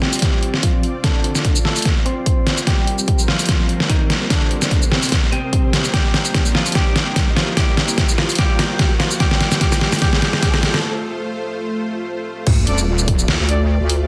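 A half-time 147 BPM groove with swung sixteenths drives this heavy, menacing wobble dubstep excerpt in D phrygian, where a punchy, up-front electronic kick and a deep-snared dubstep drum kit with hi-hat, shaker and crash push through a build-up and drum fill beneath a bright, twangy clean electric guitar melody under a low-pass filter sweep and digital delay, with a lush supersaw pad pumping in the background, a very quiet, moody ambient pad and a faint riser and sub drop, until a break at 10.8 seconds gives way at 12.5 seconds to an impact and drop, where a detuned, overdriven wobble bass and tight, clear brass stabs join in.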